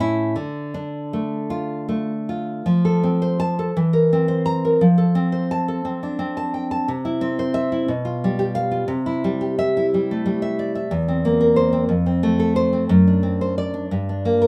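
Up front in a moderate studio ambience, a full-bodied, deep nylon-string classical guitar plays alone, fingerpicked across a range from E2 to Bb5 in this fragment cut from a longer romantic piece. The mood is passionate and melancholic, moving in a rubato 6/8 at roughly 51-62 BPM in dotted quarters. A brief opening on Dm gives way at 2.7 seconds to a longer passage in F major that drifts through C7/E, C and G7/B before turning toward D7/F# and landing on Gm at 13.9 seconds.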